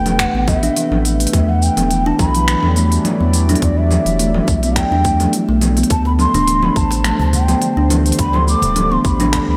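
A lightly swung 105 BPM groove of tight electronic kick, congas, finger snaps, crisp hi-hat and shaker, joined by a faint woody cajon at 6.1 seconds, drives this hypnotic, meditative organic downtempo fragment, where a round sine sub bass and a smooth, detuned sawtooth analog pad pumping to the kick carry the Am9, Em9 and D7sus4 chords beneath ringing thumbnail-plucked kalimba arpeggios and a distant, airy bansuri melody with unsteady vibrato, both bathed in tape echo, slapback and shimmer reverb inside a big, hall-like space.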